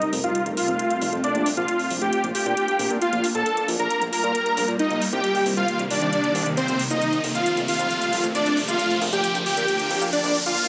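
Huge, detuned supersaw chords sit up front and carry the melody, their bright unison sawtooth tone run through a low-pass filter sweep and a dub echo across the whole 10.7 seconds. This is an uplifting, soaring trance build-up at 135 BPM in a straight 4/4, cut from a longer piece, moving through F, Bb, Gm7/Bb and Cm7 before returning to F and Gm7/Bb. Beneath the lead, a shimmering, ethereal pad holds sustained chords with a slow attack, octave-up shimmer, granular texture and chorus. A fat, saturated analog bass enters at 0.1 seconds with a thick, detuned sawtooth sound, while layered electronic hi-hats and shaker bring metallic, overdriven hats that were re-recorded in a large room. A riser runs in the background throughout, and a lush hall reverb with a 2.2-second decay gives the mix a spacious feel.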